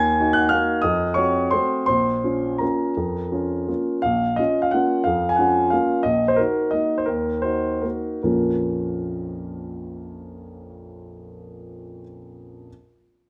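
In a 3/4 waltz with free rubato, the tempo drifts between 142 and 189 BPM. A solo baby grand piano spans Bb1 to Ab6 in Bb minor, tuned to A4 = 443 Hz, and moves from Ebm through F7b9 to Bbm, slowing between 5.6 and 8.2 seconds before settling back on Bbm. The elegant, wistful piece is cut from a longer work, and the polished, present piano sits up front with long sustain, captured close and detailed in a moderate recital-hall reverb.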